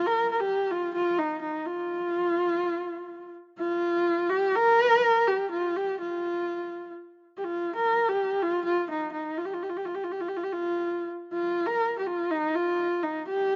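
Mongolian traditional music at a galloping, proud 124 BPM in 4/4, this 13.6-second excerpt features a lone bowed horsehead fiddle, husky yet focused and up front, singing between Eb4 and Bb4 with vibrato and portamento, touched by a slapback echo and light reverb in an open-air recording whose highs are rolled off above 7.5 kHz.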